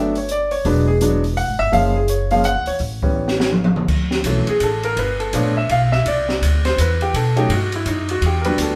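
Caught in a stone room with a live, reverberant ring, this short cut from a longer jazz piano trio piece has a sophisticated, warm mood and a swinging waltz feel in 3/4. An up-front grand piano carries the melody over woody pizzicato upright bass and an acoustic drum kit with dark cymbals, a high-tuned snare and a boomy kick. A drum fill at 3.2 seconds leads into a grand piano solo from 3.9 seconds over shifting extended chords.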